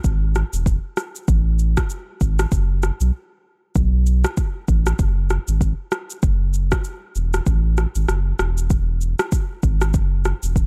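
Sunny and breezy, this short afrobeats excerpt moves at 97 BPM in E major with a swung sixteenth-note feel, built from just a sub bass with octave and an afro-pop drum kit, both up front for the full 10.7 seconds. The bass is deep, full and sustained, with a fast attack and a sine-and-triangle tone sitting low between E1 and B1. The electronic kit pairs a deep kick with rim click and shaker in a tape-tinged sound, and a brief break at 3.1 seconds interrupts the groove inside a digital ambience with a dark, warm production.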